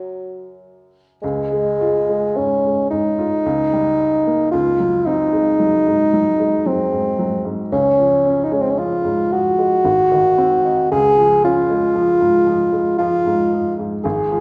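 In a slow 3/4 at 56 BPM, this romantic classical duo breathes with free rubato, its phrases stretching and settling in Db major. A dark bassoon carries the lyrical melody as the soloist, placed up front with a smooth top to its tone, moving between F#3 and Ab4. Beneath it, a baby grand piano supplies intimate accompaniment from deep Ab1 up to A#5, its natural sound marked by audible action noise and a short sustain. After a brief opening on F#, the music shifts at 1.2 seconds into a longer passage that moves through Db, Eb7/Db and Ab7/Db before returning home, touching Ab at 9.9 seconds and resolving to Db. A moderate concert hall reverb surrounds the pair, lending the warm, lyrical mood of this fragment from a longer piece a gentle sense of space.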